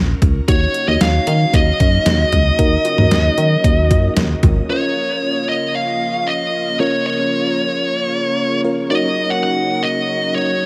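A dark, tremolo-laced FM electric piano and a round, punchy FM bass open this cool, melancholic synth-pop fragment in Eb minor at 114 BPM. They are joined almost at once by an overdriven, detuned 8-bit drum machine with a thumpy kick and cowbell, and by a mellow, organ-like ensemble-string pad under chorus. A high-gain, distorted lead guitar sits up front carrying the melody through analog delay and shimmer reverb over Ebm7 and Bbm chords, and once the bass and drums drop out at 4.6 seconds, guitar, piano and pad hang in an echo-heavy mix with spring reverb until 10.7 seconds.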